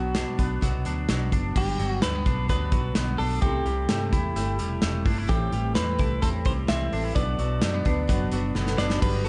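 A nostalgic, bright indie pop piece opens with a twangy, direct-recorded clean electric guitar carrying the melody through subtle chorus and analog delay, alongside a bright twelve-string electric guitar playing arpeggios with spring reverb and analog delay, a full-bodied picked acoustic guitar tucked in the background, and a round, foam-muted fingered bass. An up-front studio drum kit with a punchy kick, medium-tuned snare, hi-hat and crash in a pumping room joins at 0.1 seconds. After the chords have moved from Bm through Gmaj7 and C6, warbling, detuned lo-fi synth keys with chorus and phaser drift in at 5.3 seconds on Am7 before the harmony returns to Bm. A drum fill arrives near the end of this excerpt, all within a dark, softly reverberant mix.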